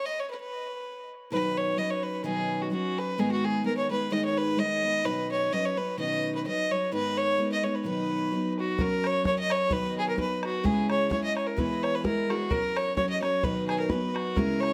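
Celtic folk polka in B major at 128 BPM, cheerful and lively, with a light swing in 2/4. A rich, biting fiddle with tape echo opens alone and carries the melody up front, joined at 1.3 seconds by a warm, picked steel-string acoustic guitar moving through chords like Badd9 and G#madd9. At 8.8 seconds the tune turns to a new section over F#, B, C#m and E as a damped, tight bodhran enters, all set in a moderate studio reverb in this excerpt cut from a longer piece.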